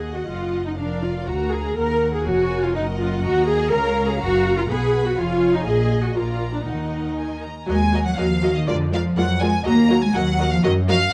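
A quick, stormy classical-period movement for string orchestra in E-flat minor, this restless excerpt moves at 122 BPM in a straight 2/4 and runs its opening phrase twice in about 11 seconds, circling from E-flat minor through B-flat, D-flat and G-flat major seventh harmonies before settling back on the tonic. A focused, vibrato-rich first violin section carries the melody high and close, while a lush, expressive second violin line sits distant in the background. Up front, a rich viola section holds the accompaniment over a smooth, even cello section and a focused double bass section, all captured by close, detailed microphones in light reverb.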